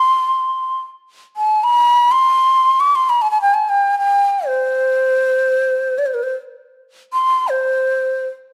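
A breathy, bright end-blown reed-cane ney plays alone up front in free time for this stately, passionate Arabic fragment cut from a longer piece, its tongued notes and vibrato carrying lifted highs through light reverb from 0.0 to 8.3 seconds, set in a dark production tuned to A4 = 439 Hz.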